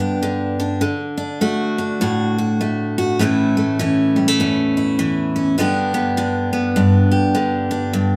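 Sunny and nostalgic, this short country fragment is cut from a longer piece and moves at 101 BPM in 4/4 with a swung eighth-note feel. A lone picked steel-string acoustic guitar carries it from start to finish, ranging from E2 up to G4. The dreadnought tone is bright and full-bodied, sitting up front in the mix. The harmony rests in G lydian, moving from G to D, then A at 3.2 seconds, before settling back on G at 5.6 seconds. A moderate stone-room reverb gives the guitar a natural, live-in-the-room air across the 8.2 seconds.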